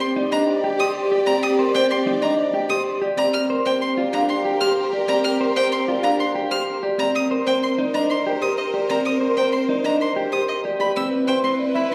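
A woody, soft-mallet marimba carries the melody through this hypnotic, propulsive minimalist classical pattern piece in 6/4, with a slightly broken-up electric guitar sitting up front and a rich, close solo violin both running arpeggios, while a mellow French horn adds a distant second line and a lush symphonic string section holds sustained chords in the background, all set in a recital hall's wet reverb heard from further back as the harmony moves from Ebmaj7 through Bb6 and Cm7 before a brief new section lands on Cmaj7 at 10.8 seconds.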